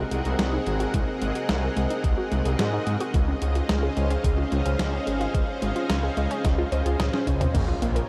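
A straight 4/4 synthwave pulse at 109 BPM comes from a thumpy, tape-warm electronic kick entering at 0.9 seconds and a detuned 8-bit drum machine with crash, hi-hat, a medium-tuned snare and toms, which plays a fill just before a very quiet electronic impact lands at 7.5 seconds. Underneath, a thick, saturated detuned saw bass sits up front, while a bright vintage string machine with ensemble chorus and sidechain pumping holds sustained chords moving from Ab7 to Dbmaj7 and on to Bbm. In the background a punchy, warbling unison pluck arpeggiates through a filter sweep and diffuse delay, all steeped in a huge dreamy reverb that gives this nostalgic, cinematic fragment its haze.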